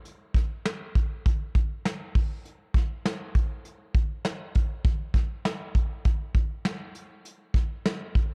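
Hazy and nostalgic, this short indie pop excerpt moves at 100 BPM in a straight 4/4. A soft brush drum kit plays throughout, its hi-hat, punchy kick and medium-tuned snare sitting up front with a smooth, rolled-off top and the close, acoustic sense of a small room. The production is dark with little reverb.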